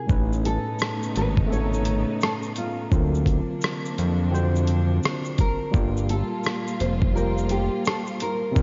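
A fingerpicked nylon-string guitar melody, softened by lush chorus and analog delay, opens this reflective, hazy lo-fi hip hop excerpt over a worn, slightly out-of-tune tine electric piano with a lightly driven edge, and at 0.1 seconds come smooth bowed strings, a fat, detuned sawtooth bass and a gritty sampler-style drum kit of thumpy kick, rim click, hi-hat and shaker, with a swung groove, light reverb and a muffled, dark top.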